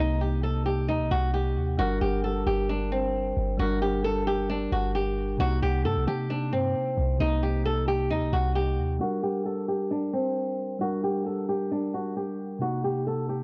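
Hip hop trap excerpt in G harmonic minor at 133 BPM with a brooding, hard-hitting half-time feel, where an up-front, fingerpicked flamenco guitar carries the melody with fresh strings through a low-pass filter over a clean, low-pass-filtered tine electric piano cycling Cm7 and Gm, while a deep, boomy, sine-like 808-style bass with a fast attack and dark decay drops out at 9.0 seconds, all set in a dry, gritty room with transformer saturation.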